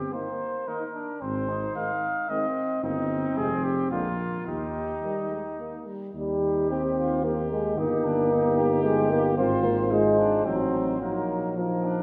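Classical brass quintet in a noble, stately 3/4 at 110 BPM in Eb major, where a mellow, punchy trumpet with light vibrato carries the melody over a roomy, distant flugelhorn second line, a vintage-toned euphonium up front and a warm French horn in the background share the accompaniment, and a smooth-topped tuba holds the bass, the quintet heard from further back in a wet scoring-stage reverb as the harmony moves through Ab, Fm and Bb7 toward an Adim7 and a closing Bbsus4 in this fragment cut from a longer piece.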